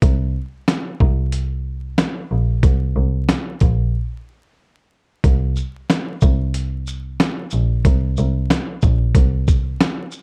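A gritty, compressed sampler-style drum kit sits up front with a thumpy kick, fat snare, hi-hat and shaker, sounding re-recorded in a large room, in this moody, reflective boom-bap hip-hop cut from a longer piece at 92 BPM in 4/4 with a light 16th-note swing. A single bowed double bass, clear, smooth and even with vibrato, also sits up front in its low register until 9.7 seconds. The dark production carries vinyl crackle and little reverb, with a break from 3.9 to 5.2 seconds before the second half.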